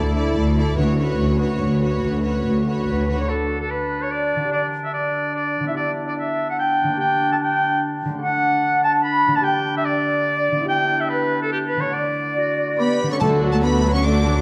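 Triumphant and soaring, this cinematic passage in 3/4 opens with a lush build-up of strings, where intense violins carry the melody over clear violas, rich cellos and double basses, while a ringing harp plays arpeggios throughout; from 2.9 seconds a bright, up-front oboe and a hollow flute take over the lines, joined by a clarinet at 3.3 seconds, before the strings return between 12.8 and 13.2 seconds with mellow trumpet stabs from 12.8 seconds and soft-mallet timpani at 13.2 seconds, all set in a moderate scoring-stage reverb with a dark, warm production.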